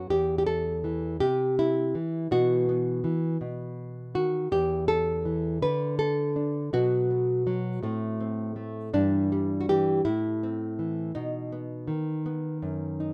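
A dark, fingerpicked nylon-string guitar plays up front in this wistful, melancholic solo folk excerpt, a slow 6/8 at 54 BPM whose classical touch moves from E5 through C, Bsus4 and B, then from B5 through Am, Em7/G and Am back to B, with finger squeak audible in a dry, rough home-demo sound.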